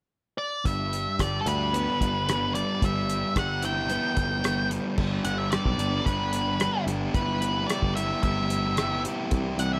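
Wistful and jangly, this indie rock cut opens with a dark, fuzzy octave lead guitar singing the melody up front from 0.4 seconds, joined at 0.7 seconds by a sludgy, overdriven guitar riff, a growly, foam-muted picked bass and a dry, cloth-damped drum kit with a tight kick, rim clicks, hi-hat and crash, all in a small room with light reverb as the chords sway between G and Em/G.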